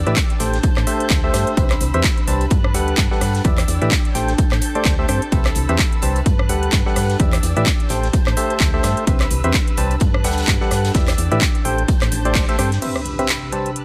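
Piano house with a bittersweet, energetic mood, cut from a longer piece, riding a swung 4/4 groove over a cycling Am7, Cmaj7, Gmaj9, Em7 progression. A punchy, overdriven electronic kick sits up front beside a layered house kit of claps, metallic hats, rim clicks and crash, with a very quiet acoustic rock kit adding snare and hi-hat beneath. A round, dark FM bass, a hollow, percussive organ stab with chorus and tape echo, veiled con sordino chamber violins and a warbling, lo-fi, tape-like pad all pump with sidechain in a digital ambience. After a band accent at 12.4 seconds, the bass, rock kit and kick stop, and an electronic impact lands on Cmaj7 at 12.8 seconds.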